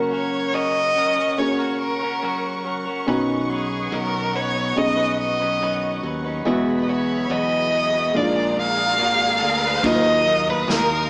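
Heard through a small-speaker sound, with a band playing live in one room and a moderate large studio reverb, this heartbroken, longing pop ballad drifts at 71 BPM in 4/4 through chords from Gb/Db to Badd9 and Eadd9. An up-front violin carries the expressive melody with vibrato and portamento, over a soft felt-muted upright piano, a lush, woody string section in the background and bright, clean, picked electric guitar arpeggios with digital delay. A punchy fingered bass enters at 3.1 seconds, an electronic riser builds from 7.9 seconds, and a distant, roomy acoustic drum kit played with bundle sticks arrives at 9.8 seconds as the harmony shifts to Ebmadd9 in this short cut from a longer piece.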